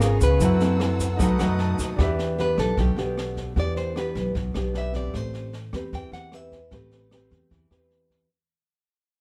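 A wistful, intimate bossa nova fragment opens with a bright, fingerpicked nylon-string guitar melody over a dark, thumb-plucked second nylon-string guitar, clear grand piano, woody pizzicato upright bass, a brushed drum kit with boomy kick and high-tuned snare, a grainy tube shaker and lush bowed strings in the background; then, after a piano fill from 1.2 seconds, the strings and shaker drop away at 2.0 seconds as a nylon-string guitar solo begins and the recording fades out in light reverb.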